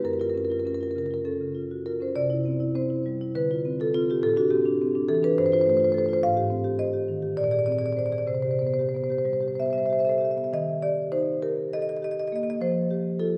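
This contemporary classical piece for solo marimba, cut from a longer work, has a flowing, warm mood. The pulse moves in 7/8 at roughly 185-214 BPM counted in eighths, with a rubato feel, and the instrument is tuned to A4 = 439 Hz. The marimba is played with medium mallets and sits up front, ranging from F#2 to F5. Its harmony drifts through colorful shifts such as F#maj7, Dm7, G9sus4, Abmaj7, Bb9 and Cmaj7 before a new passage begins at 10.5 seconds on Eb and settles toward Fadd9 at 12.6 seconds. A wet concert-hall reverb with a 1.7-second decay surrounds the instrument, giving it the spacious bloom of a church or concert hall.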